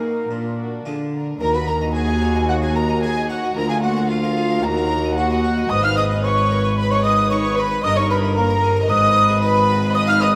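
Set in a moderate concert-hall reverb, this stormy, driving baroque-style concerto movement in Eb minor at 112 BPM, cut from a longer piece, pairs an airy wooden flute melody with a nasal gut-string violin section, while a second violin line, reedy violas, a warm cello bass and a plucked harpsichord in the background fill out the texture, and a double bass section joins at 1.4 s.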